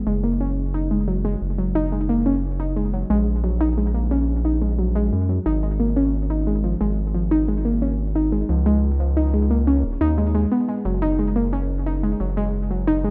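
A warbly, dusty pluck plays arpeggios from the start, its detuned, lo-fi tone colored by chorus and tape echo, while a round analog bass sits up front and deep beneath it throughout the 13.1-second excerpt. This glitchy, cerebral IDM moves at 89 BPM in a straight 4/4, with chords shifting from F#6 to G#sus2 at 5.5 seconds and back to F#6 at 10.9 seconds. Light reverb and a rough home-demo mix frame the fragment, which is cut from a longer piece.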